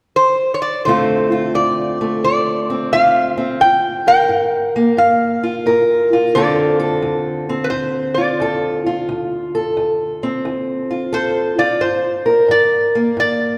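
A bright, nasal metal-body resonator slide guitar opens this soulful, smoky excerpt of acoustic country blues, its slide melody played with fingerpicks and sitting up front from 0.2 seconds. At 0.9 seconds a boxy parlour-style steel-string acoustic guitar joins with fingerpicked accompaniment, swinging over a Dm7 to Gm7 progression that settles on Gm near the close. The duo rings out in a long, wet concert-hall reverb that gives the playing a churchlike spaciousness.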